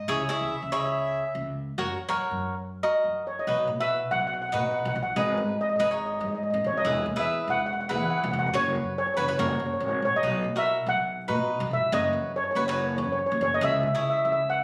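Lightly swung at 142 BPM in 4/4, this sunny, festive calypso in B major opens with a brief, distant, roomy horn section beside a crisp, picked cavaquinho and a woody, thumpy pizzicato upright bass, before a mellow, shimmering steel pan takes the melody up front from 3.3 seconds, captured on a phone in the room with light reverb and compression.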